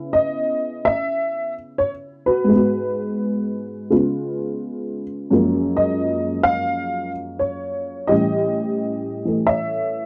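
Solo jazz with a late-night, swinging mood at 86 BPM in C# minor, played rubato with a lilting swing by a lone honky-tonk upright piano whose detuned, jangly, woody tone and short sustain sit up front in a dry, close 1970s-style studio sound with light reverb, moving through C#m9, G#m7, C#7, F#maj9 and A7 in a 10.1-second fragment cut from a longer piece.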